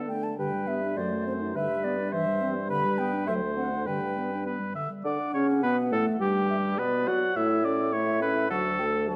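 A warm production with moderate recital hall reverb and some lossy compression artefacts frames this spirited, cheerful excerpt of a quick classical-period movement for wind quintet, in 2/4 at 104 BPM, moving from G major to D major at 5.0 s. An airy, tongued concert flute with vibrato carries the melody, while an oboe with light vibrato and a smooth top sits up front on the second line, and a dark French horn and a distant, roomy clarinet fill in the accompaniment. Beneath them a mellow bassoon, also with light vibrato and set back in the hall, supplies the bass.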